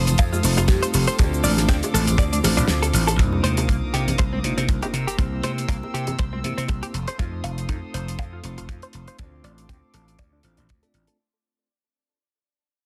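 A dense, heavily limited mix with light small-room reverb frames this sleek, groovy nu-disco excerpt at 120 BPM in C dorian, where a tight, dry kick and a growly, punchy slap bass sit up front beneath a damped 70s kit of hi-hat, snare and cabasa, ringing congas, tambourine and bongos in the background until 7.2 s, a bell-like tine electric piano with sidechain pumping and dub echo, a compressed, picked clean electric guitar riff carrying chorus, 12-bit sampler grit and dub echo, and distant, reedy bowed strings holding sustained chords, while a round, octave-layered synth lead briefly takes the melody from 0.7 s before an electronic sub drop lands at 3.2 s, filter sweeps move over guitar and strings, and the track fades out.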